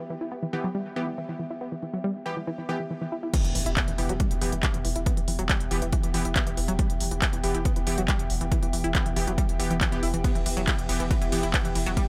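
Driving peak-time techno at 139 BPM in E minor, intense and driving, cut from a longer piece and resting on a single E minor chord. It opens with a tight, detuned sawtooth sequenced riff, tube-saturated and sent through dub echo. A warbly, nostalgic tape-like pad in lo-fi square and triangle tones sits beneath it, with punchy, airy supersaw stabs arriving at 0.5 seconds. The drop lands at 3.3 seconds with a heavy layered electronic kick, a techno kit of smooth hats, ride, crash and handclaps, and a very quiet electronic impact, and from 3.4 seconds a round, sine-based sub bass with overdrive and a low-pass filter holds a low E. From 5.0 seconds a deep, moody ambient pad drones on E in the background, its sub octave and moving notch adding shadow. Sidechain pumping breathes through the synths, pads, sub, hats and cymbals, and the mix carries little reverb overall.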